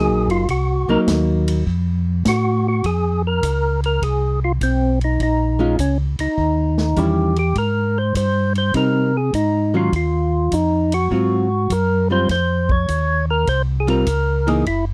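A swung 4/4 groove at 102 BPM drives this smoky, soulful soul jazz organ trio excerpt in F minor, with a vintage drum kit (hi-hat, kick drum, ride cymbal and snare drum) offering a tight kick, medium-tuned snare and rolled-off top from 0.3 seconds. A fat, lightly overdriven tonewheel organ with percussive attack and slow rotary speaker carries the melody and plays a solo opening passage, while a second, mellow, round tonewheel organ with chorus vibrato lays down the bass line and a dark, clean, picked hollow-body archtop guitar comps up front, dropping out briefly before returning at 5.6 seconds. The dry, close 1970s-style studio sound suits the harmony, which moves through chords such as Bbm7, Eb7b9 and Abmaj7 before settling on Dbmaj9.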